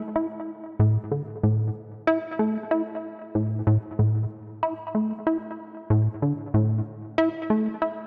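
A plucky analog bass plays alone from 0.0 to 7.9 s in this mysterious, hypnotic ambient fragment at 94 BPM in straight 4/4, tuned to A4 = 436 Hz, its punchy, detuned, wave-folded tone ranging from A2 to E4, sitting up front with vintage 12-bit sampler grit and tape echo, all set in a lush hall reverb with a 3.0 s decay.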